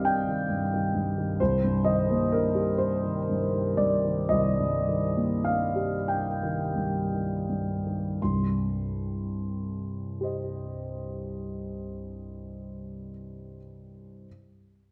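Classical impressionist solo piano in C minor, this mysterious, wistful fragment of a longer piece moves in a slow, rubato 6/8 at roughly 25-44 BPM in dotted quarters, easing back in tempo through its first 8.2 seconds. A clear, polished grand piano sits up front with long sustain, ranging from C2 to C6 over a Cmadd9 harmony before settling onto C minor at 8.2 seconds. The instrument rings in a wet recital hall reverb that lingers around each note.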